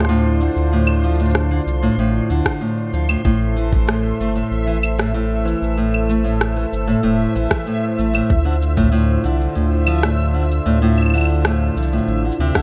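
A digital ambience frames this autumnal, intimate folktronica passage at 95 BPM, cut from a longer piece, where an up-front, fingerpicked nylon-string guitar plays arpeggios with delay over a round, sine-toned sub bass and a smooth, detuned sawtooth pad that holds sustained chords with chorus through Dm7 and Am. Electronic rim click, cabasa and claves carry studio reverb from the start, and a soft, tape-warm electronic kick drum enters at 2.5 seconds. High above, a faint reversed, granular texture swells in a dreamy, bright haze with its own reverb.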